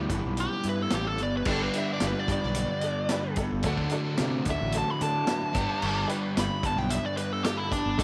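A confident, swaggering classic rock excerpt in a straight 4/4, built around a lead guitar solo from a nasal, overdriven guitar with a parked wah and slapback echo, sitting up front from 0.4 seconds. Two overdriven semi-hollow guitars play picked riffs, one hollow-bodied and warm, the other set back with a phaser, while a round, fuzzed fingered bass and an up-front vintage drum kit with a punchy kick, dark cymbals and a rolled-off top drive beneath. A detuned, jangly honky-tonk upright piano with woody, short-sustained tone joins in the background at 1.5 seconds, all in a small room with light reverb.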